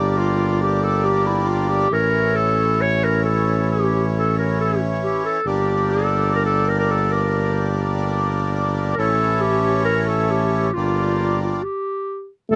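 A roomy, classical-style clarinet sings the melody over a reedy, full accordion and a mellow tuba with light vibrato in this festive, soulful klezmer fragment at 136 BPM in G dorian sharp4, moving between Gm and A in a dry, close 1970s-style studio sound before a stop at 11.6 seconds and a brief, present trombone note at 12.5 seconds.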